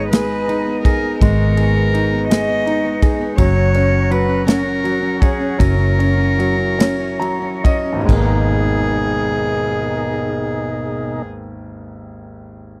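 An aching, melancholic six-eight pop ballad excerpt in a dry, close 1970s-style studio sound, where a soft-attacked, sul tasto cello sings the melody over clear concert grand piano (with a fill from 6.8 seconds), tonewheel organ chords turning through a slow rotary speaker, fingerpicked jumbo acoustic guitar arpeggios in the background, a dark, foam-muted vintage electric bass, and a punchy, airy country drum kit that drops out at 8.3 seconds after the music slows into the second section, with the piano carrying on alone once the other parts stop and closing at 12.8 seconds.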